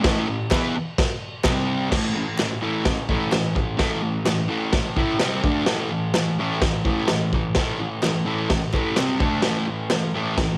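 A dark, double-tracked fuzz guitar sits up front, picking a riff that moves between A5, C5 and D5 power chords in this rowdy, raw garage rock fragment cut from a longer piece. A gritty, saturated drum kit with a punchy kick, medium-tuned snare and crash cymbal pumps in a small room with a rolled-off top and cassette-tape grit, while crisp, dry group handclaps join in the background from 0.5 s. The whole take has the light reverb and small-room ambience of a home cassette recording, with the riff moving into its second section at 1.9 s.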